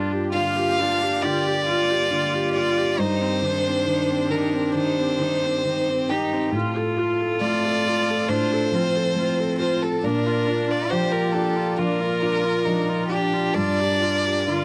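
Close, detailed microphones and little reverb frame this reflective, fragile neoclassical excerpt in G minor, moving at a rubato 68 BPM as the harmony passes from Gm7 through Cm/G, F/A and Bb before returning to Gm7. A felt-muted upright piano sits up front with soft, mellow tone and audible action noise. A dark, woody viola adds accompaniment in the background while a dark chamber string section holds sustained chords behind it, and a pure, floating cello carries a second line. From 0.3 seconds a single violin takes the melody up front, its airy bow, light vibrato and soft attack giving it an intimate, close presence.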